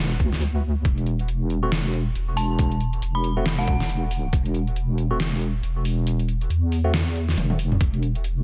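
Deep dubstep in a dark, meditative half-time swing, this short excerpt rests on a deep, soft wobble bass with a square-and-sine tone, chorused and up front, joined almost at once by a gritty, pitched-down electronic kick and an overdriven, layered drum kit with a deep snare, metallic hats and toms. Bright, barky tine electric piano stabs arrive at 1.6 seconds through phaser and dub echo, while an eerie, inharmonic FM synth bell briefly sings a high melody with chorus and echo. The kick drops out at 6.1 seconds, and the drums play a fill over the bass before the kick returns for a single hit at 7.8 seconds, all in a dry, close sound.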